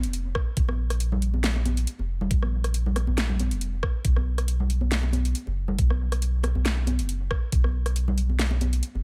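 A soft, round sub bass and a layered dubstep drum kit open this short cut from a longer deep dubstep piece, setting a heavy, cavernous mood in a half-time feel with a light swing on the sixteenths. The sub sits up front with a deep, sustained tone blending triangle and square waveforms and a fast attack, moving only between F1 and B1. The kit brings metallic hi-hats, a rim click and a huge snare, all with a tape-warm, produced character, while a knocking electronic kick arrives at 0.4 seconds and also sits up front in the mix. Close, ringing acoustic congas join at 0.7 seconds, trailed by a dub echo, with the whole mix set in a digital ambience. The whole fragment holds a single section, with the kick dropping out at 7.6 seconds as the bass and congas carry on to the end.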